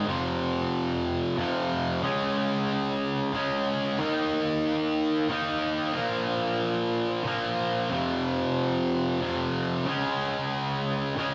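Recorded live in one room with a heavy wash of large studio reverb, this brooding, cinematic rock excerpt in a slow triple metre features a lone sludgy, overdriven electric guitar, picked, double-tracked and up front, grinding through a dark cycle of power chords on F, Db, Eb and Bb for its full 11.3 seconds.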